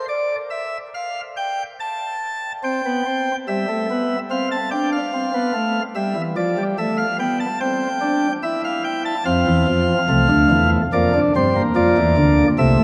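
A classical, baroque-style three-part fugue at 72 BPM in 4/4, elegant and joyful, this short passage cut from a longer piece features a solo chamber organ whose full, up-front principal chorus, with a crisp chiff, carries the counterpoint through a progression from C toward F, blooming into the long, echoing reverb of a vast cathedral.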